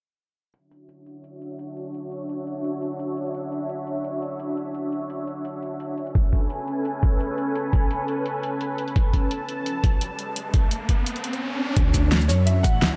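Opening at 0.5 s with an overdriven, layered pop kit of fat snare, hi-hat and shaker, this lush liquid drum and bass excerpt at 171 BPM in D lydian soon brings in a thick, bright unison saw pad with chorus, phaser and sidechain pumping, then adds a gritty, thumpy electronic kick at 6.2 s and an electronic riser over a sweeping filter before the drop at 11.8 s, where a deep, rumbling detuned saw bass arrives, soon joined above by a mellow, worn grand piano with diffuse delay, the dreamy mix soaked in huge ambient reverb.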